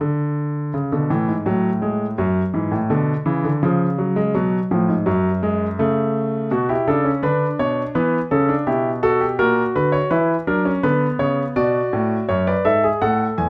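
A clear, intimate grand piano sits up front in light reverb, its natural tone carrying audible action noise across a range from E2 to G#5. This serious, driving baroque-style four-part fugue in B minor moves at 83 BPM in a straight 4/4, with the solo piano working through harmonies such as F#m, C# and Bm over its 13.5 seconds. The passage is cut from a longer piece.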